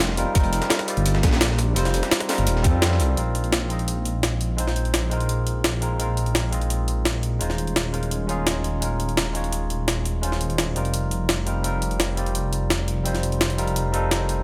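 A swelling, detuned saw bass sits up front with a menacing, evolving sawtooth tone under this lush, dreamy liquid drum and bass excerpt, while a barky tine electric piano drifts through lush chorus and delay over suspended ninth chords. A gritty, pitched-up jungle sampler-style kit drives hi-hats and a high-tuned snare throughout. At the start it is joined by a dark, saturated breakbeat kit that stays in the background until 3.1 seconds, and from 0.4 seconds by a tight electronic kick that drops out before the new section arrives at 3.2 seconds.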